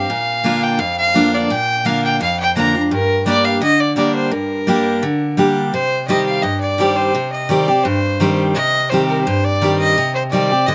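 Lonesome and rustic, this short bluegrass fragment pairs a biting, airy-bowed fiddle, carrying the melody with light vibrato and an earthy edge, with a bright, full-bodied picked dreadnought guitar whose finger squeaks come through, both up front in a dry, open-air sound as the chords move from Bb to Gm and then Cm.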